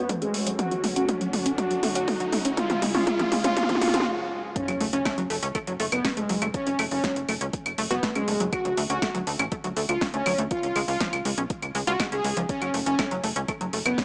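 A straight 121 BPM pulse from an overdriven electronic kick and a punchy deep house kit of claves, metallic hats, snare and toms drives this dramatic, cinematic melodic techno excerpt in F# harmonic minor, where a bold, brassy synth melody and a tight, phased, gritty arpeggio sequence pump over an eerie, inharmonic detuned bell line, an airy resonant pad and a faint analog drone that both drop out by 4.5 seconds, while a background riser and sub drop build toward a drop at 4.6 seconds, just after which a nasal, saturated sequencer bass arrives, and the dry, lo-fi mix carries light digital ambience.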